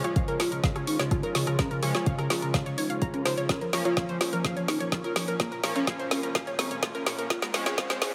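A straight pulse drives this melancholic, hypnotic melodic techno excerpt, cut from a longer piece. A deep, tape-tinged electronic kick sits beside an up-front deep house kit of dark hats, rim click and a woody snare, the whole passage acting as a build-up with a drum fill running throughout. A soft, round octave-layered lead carries the melody over a sine sub octave, coloured by chorus, phaser, cassette tape character, digital delay and sidechain pumping while a filter sweeps across it. A bright analog pluck spins arpeggios high above, and an edgy sync-sweep polysynth adds nasal stabs in the background, both pumping and trailed by delay. An eerie, inharmonic FM bell traces a very quiet second line, and a morphing, vintage wavetable pad holds sustained chords beneath as the harmony moves from Db to Bbm and back. A faint riser enters at 6.0 seconds, and a lush hall reverb with a high-pass filter wraps the mix.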